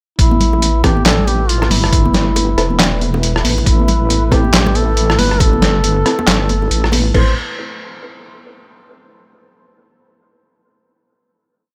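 A mellow duduk with vibrato and scooped notes carries a brooding, meditative folk-style motif from 0.2 s, roughened by vintage 12-bit sampler grit and dub echo. It sits over a moody, chorused analog pad, a deep, saturated wobble bass whose wobble speed changes, and a half-time deep dubstep beat of thumpy, pitched-down kick and tape-colored sampler kit with snare, rim, claps, hats and crash, re-recorded in a small room. Echoing congas and bongos sit in the background, and sparse, muted chord stabs with phaser, cassette tape and dub echo join at 0.8 s before a band accent at 6.8 s and a closing chord from 7.1 s in this dry mix.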